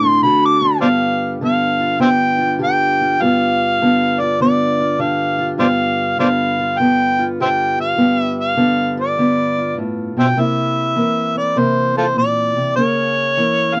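An overdriven, amplified harmonica carries the melody up front in this gritty, swaggering fragment of acoustic country blues, its tone thick with grit and a light vibrato. The harmonica plays a jazz-style solo full of tongue slaps and scooped notes, reaching from the middle register up into a high range. Beneath it, a fingerpicked steel-string parlour guitar supplies the accompaniment, its sound dark and boxy and also placed close in the mix. The groove swings in four, moving from D7 to G7 and later to C7 at 10.4 seconds before landing on C#m6 at 12.8 seconds. The recording is dry and intimate, with a close 1970s studio character and only a trace of room.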